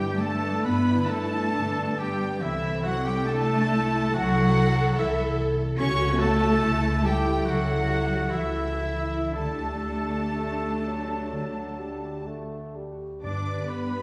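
In a rubato 4/4 pulse drifting between 55 and 74 BPM, this slow, romantic orchestral passage unfolds with a lyrical, tender mood, moving from G through Am/C, A7/C# and Dsus4 before settling back on G. A symphonic violin section carries the melody with light vibrato and a smooth, even tone, while a second violin line, lush and expressive with a soft attack, joins an airy, bright flute group and a solo oboe in weaving supporting lines. Beneath them, a viola section with portamento supplies accompaniment, mellow French horns hold sustained chords, a ringing fingerpicked concert harp plays arpeggios, and a distant trumpet section adds warm stabs. The bass is anchored by a prominent cello section and a rich, bowed double bass section. A dark solo bassoon briefly adds accompaniment from 10.4 to 13.2 seconds, and very quiet, articulate timpani strokes mark the opening instant and return at 13.2 seconds. 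The whole ensemble is heard from further back in a reverberant recital hall, lending the fragment a spacious, glowing bloom.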